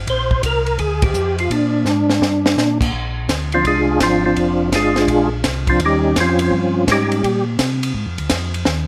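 A percussive tonewheel organ carries the melody up front, its round tone marked by third harmonic percussion and colored by chorus vibrato and a slow rotary speaker. This is a bluesy, soulful soul jazz organ trio cut from a longer piece, swinging in 4/4 at 168 BPM in Bb mixolydian. A second, mellow tonewheel organ holds down the bass line, with its own chorus vibrato and slow rotary speaker giving it a clean, dark depth. A compact cocktail drum kit sits up front, acoustic and dry, with a punchy kick, a high-tuned snare, and dark crash, ride and hi-hat cymbals. After a band accent and a drum fill, an organ solo begins at 2.9 seconds over Bb13 and Eb13 harmony. A moderate large studio reverb gives the trio some air.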